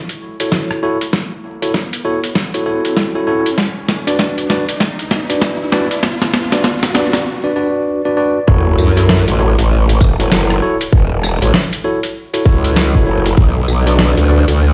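A swung 4/4 groove at 98 BPM drives this swaggering, playful glitch hop cut in F# minor, taken from a longer piece and moving between F#m7 and Bm. A gritty, pitched-down boom bap sampler-style kit of hi-hat, rim click, medium-tuned snare and tambourine sits up front with small room ambience, joined from 0.5 seconds by a tight, layered electronic kick. Clean tine electric piano stabs, also up front, pump against the sidechain and pass through a low-pass filter and tape echo, while an electronic riser and sub drop sit in the background through the build-up and into the drop. At 8.5 seconds the drop lands with an impact, and a growling, wobbling growl bass enters, formant-filtered and saturated through tube saturation and chorus, bright and aggressive in the low register. The whole mix carries a plate reverb, the boom of a big system in a bare room and a layer of vinyl crackle.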